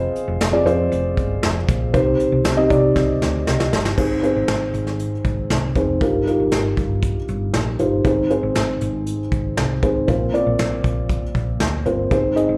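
A felt-muted upright piano opens this driving, dramatic piano-led pop excerpt at 118 BPM, its mellow, boxy tone up front with audible action noise, alongside a round, punchy hollow-body fingered electric bass. A vintage brush kit joins at 0.2 s with dark cymbals, a tight kick and a medium-tuned snare, and a drum fill from 3.0 to 4.0 s leads the harmony from Fm and Cm into a passage moving through Ab, Ebadd9/G and Bbsus2. It sounds like a live club gig heard through the venue's PA, with light reverb and small-room ambience.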